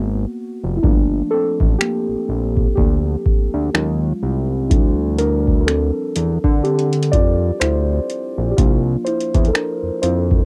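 Contemporary R&B at a slow 62 BPM in D minor, this sensual, late-night excerpt swings gently on its sixteenths, opening with muted, felt-like synth keys carrying a soft chorus and cassette-tape haze alongside a fat, detuned, saturated analog bass. At 0.8 s a booming analog drum machine comes in with a deep kick, metallic hi-hats and finger snaps, while the intimate keys hold the spotlight over chords moving from G#m7 through Gm7, Ebm11 and Dm11 to a closing C9sus4. The dry, close sound of a home cassette recording keeps every part up front.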